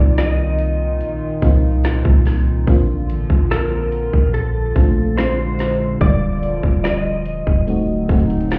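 A trap drum kit sits up front in this short cut from a moody, sensual contemporary R&B piece, entering at 0.2 seconds with a hard-clipped kick, a woody snare and metallic hi-hats, all re-recorded in a large room. Beneath it, a soft 808-style bass adds deep, round, sine-like notes with a fast attack that decay into darkness. An FM electric piano layered with a soft pad plays lush, dreamy accompaniment with a noise layer and chorus. A hollow, flute-like pad holds sustained chords with a slow attack and long release. Over these, a direct-recorded clean electric guitar carries the melody in a compressed, scooped tone, shimmering through analog chorus and delay. The mix sounds as if heard muffled through a wall with club reverb, drifting through Cm11, Bbmaj7, Bb9 and Ebmaj9 before landing on D7b9.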